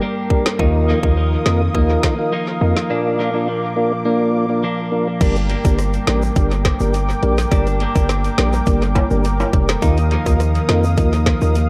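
An echo-heavy mix with light reverb and digital ambience frames this sultry, tough dancehall excerpt in G minor at 104 BPM, moving between Gm, Ebsus2 and Bb. Up front, a punchy, sine-based 808-style bass with a noise layer and an electronic drum kit with a tight kick, woody snare and dub echo drive the groove. A tonewheel organ with key click, slow rotary speaker, sidechain pumping and dub echo plays accompaniment, a twangy twelve-string electric guitar picks echoing arpeggios, and a mellow, detuned sawtooth pad with chorus holds sustained chords above, with bright, vintage-toned tube shaker and timbales joining at 5.2 s.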